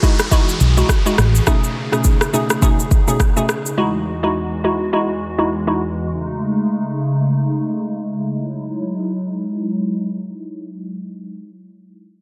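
This joyful, romantic afrobeats passage in E major at 104 BPM opens with a glassy, crystalline wavetable pluck carrying a filter sweep, a hollow, flute-like pad holding sustained chords under ensemble chorus, an overdriven electronic drum kit of deep kick, rim click and shaker with a swung sixteenth feel, and a faint downlifter effect. The fingered hollow-body electric bass, dark, round and punchy, sits up front but appears only briefly, from 0.6 to 1.4 seconds. The harmony moves from Emaj9 to B13, back to Emaj9, then to Amaj7#11/C# before returning to Emaj9. The drums and downlifter drop out at 3.8 seconds, and the nasal, detuned pluck stops at 5.8 seconds. This leaves the soft, warbling vintage pad to carry the closing stretch alone until 11.5 seconds. Light reverb surrounds a dense, heavily limited modern master, and the recording is cut from a longer piece.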